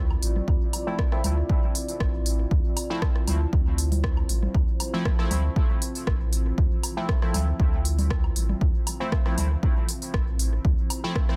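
A dark, detuned ambient pad holding a Dm9 chord and a clean sine sub bass open this nocturnal dub techno excerpt in D minor at 118 BPM, both pumping to the sidechain, soon joined by background woodblock and congas with dub echo, a deep house kit of smooth hi-hat and rim click with a softly clipped snare, a punchy, up-front electronic kick from 0.5 s, and juicy, resonant sawtooth polysynth stabs with chorus, phaser, filter sweep and dub echo from 0.9 s, all in a dense, heavily limited, dry mix.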